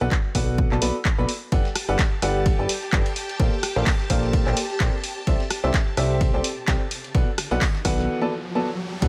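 A light reverb surrounds this joyful, feel-good piano house clip, running at 128 BPM in 4/4 with a gentle swing on the sixteenths. A clear, woody upright piano sits up front, playing a riff that pumps against the kick and trails tape echo, while a plucky, funky analog bass with a fast, decaying filter pluck pumps beneath it. A punchy electronic kick drives from the start alongside a dry analog drum machine supplying handclaps, hi-hat and rim click. At 1.5 seconds a shimmering string-machine violin section enters with soft-attack sustained chords, bright ensemble chorus and vintage 12-bit sampler grit, alongside a dusty, gritty, tape-toned soul kit of hi-hat, ride and snare tucked in the background. The chords move through Bm7, Gmaj9, Bbmaj9 and C69 before returning to Bm7, and an electronic riser and sub drop arrive at 7.4 seconds, leading into a short break at 8.1 seconds as this cut from a longer piece ends.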